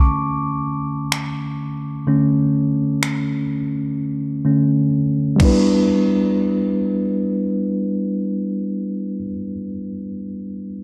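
This moody contemporary R&B fragment, cut from a longer piece, opens on a bell-like tine electric piano, clean and up front, heard through built-in speakers. The piano takes a featured solo through a filter sweep, its low-pass filtering softening the top end as it moves from Aadd11/D to Em7. At 1.1 seconds a detuned 8-bit drum machine joins in with a thumpy kick, finger snaps and crash cymbal, overdriven and re-recorded in a small room for a sampler-style edge. The drums drop away by 5.7 seconds, and the electric piano carries on as accompaniment until 10.8 seconds. A slow, swung 16th-note feel and light reverb sit within a dark, warm production that leaves a sense of longing.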